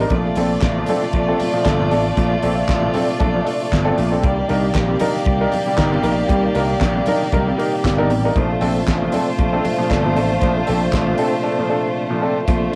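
Glamorous and danceable, this short disco excerpt, cut from a longer piece, rides a lightly swung sixteenth-note groove in 4/4 with a home-cassette sound and light reverb. A rich studio violin section sits up front as a second line, smooth and even with light vibrato, while a clear grand piano with a worn, natural tone supplies the accompaniment. Behind them, a tonewheel organ holds sustained chords, lightly overdriven with chorus vibrato, key click and a slow rotary speaker. A vintage slap bass, electric, amped and punchy, anchors the low end beside a damped 70s drum kit with a fat snare, tight kick, hi-hat and handclaps, and high-tuned congas ring with hard hands in the background. The harmony moves from Bbmaj9 to Cm9 and back, and a break arrives at 11.5 seconds before the parts drop out between 12.4 and 12.8 seconds.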